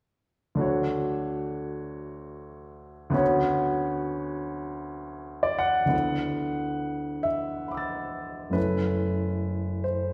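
Serene and hazy, this short cut from a longer impressionist solo piano piece drifts in 3/4 at a relaxed 62-72 BPM, its rubato feel letting the pulse breathe freely in D major. A baby grand piano carries everything alone from 0.6 to 10.1 seconds, spanning from F#1 up to A6. Its tone is clear and natural with a long sustain, placed up front and intimate enough that the mechanical noise of its action is audible. The harmony moves from Dmaj7 to Bmadd9/D, then turns at 5.9 seconds to a new passage built on D69 and F#m7. A wet recital hall reverb with a 1.7-second decay surrounds the instrument, giving the sense of a church or concert hall.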